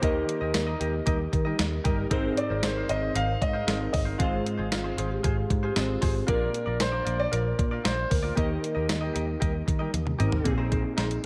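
An up-front, thumpy 12-bit drum machine drives this nostalgic, romantic 1980s-style pop fragment alongside a round, foam-muted picked bass, glassy chorused digital keys, a bright, twangy direct-recorded guitar riff and a grand piano melody with deep bass and diffuse delay, while a woody marimba line enters softly in the background at 0.5 s and dark, detuned synth-brass stabs arrive at 1.1 and 9.4 s, the whole mix soaked in dreamy plate reverb.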